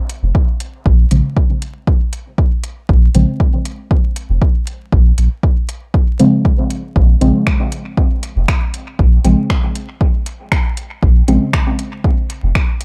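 A dry mix with little reverb sits under a steady bed of vinyl crackle in this meditative, deep dub techno cut from a longer piece, moving at 118 BPM in a straight 4/4 in Bb minor around a single Bbm7 chord. Up front, a dark, detuned chord stab with chorus, phaser, sidechain pumping and dub echo pulses over a round sine sub bass that also pumps, while a punchy, tape-warm electronic kick from a small room drives the groove. Further back, an overdriven deep house kit of finger snaps and metallic hats, re-recorded in a large room, trails dub echo from 0.1 seconds to the end at 12.8 seconds.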